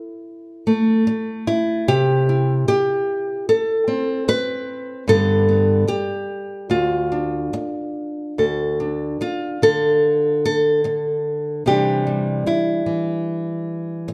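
Drifting freely in a rubato 4/4, this haunting, wistful folk fragment features a lone fingerpicked nylon-string guitar with fresh strings and a small, warm, up-front tone, moving from A5 through C, G and Dm to a closing Cadd9 around 11.7 seconds within the dark glow of a large studio's moderate reverb.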